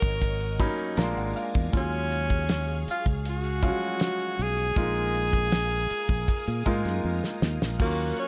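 Lush 1970s-style soul with a smooth, cinematic mood, cut from a longer piece, where an edgy, forceful tenor saxophone carries the melody up front with scooped notes and a slapback echo over a clear, polished baby grand piano that opens with a fill at 0.2 seconds. A fingered electric bass sits punchy and direct beside a damped 70s drum kit with a fat snare, tight kick and dark cymbals, which plays a fill at 7.0 seconds, while a shimmering vintage string machine holds sustained violin chords with ensemble chorus in the background. At 7.8 seconds a rich studio violin section enters with expressive vibrato and its own slapback echo, all within a small room ambience.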